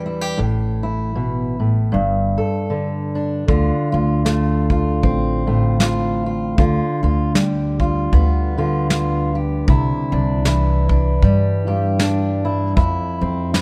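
Acoustic folk with a pastoral, hopeful mood and a gentle swing, where a dark, up-front fingerpicked steel-string guitar opens the excerpt, a woody pizzicato upright bass joins at 0.4 seconds, and a soft brush kit with a tight kick and medium-tuned snare arrives at 3.5 seconds, all captured with close, detailed microphones and little reverb in this fragment of a longer piece.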